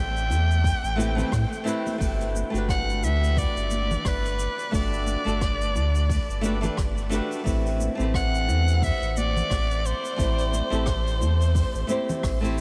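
A swung sixteenth-note groove in 4/4 carries this relaxed sunset chillout piece, where a deep, layered electronic kick, a round, up-front sine sub bass, natural brushed hi-hat, rim click and shaker, and very quiet hard-handed bongos and congas sit beneath a bright, fingerpicked flamenco guitar with audible finger squeak and a raspy, gritty soprano saxophone melody full of vibrato and scooped notes, guitar and sax both trailed by diffuse ambient delay in a dreamy mix soaked in huge reverb as the chords move from Am7 to Gmaj7 at 2.0 seconds and back at 7.5.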